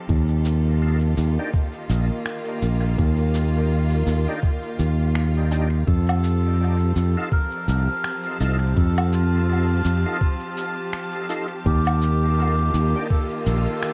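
Clear, bowed string-section chords open this hazy, spacious ambient dub fragment at 83 BPM with a swung 16th-note feel, joined almost at once by a bright, up-front fingered electric bass, a thumpy, muffled, pitched-down kick with a tape-warm edge, and a compressed, sampler-style cabasa, finger snaps and woodblock in dub echo, while a gritty, overdriven tonewheel organ with slow rotary speaker stabs from the background from 1.4 s and a reedy, breathy, nasal melodica carries the melody from 5.9 s over Ebmaj7 and F7, the mix drenched in echo-heavy digital ambience and vinyl crackle.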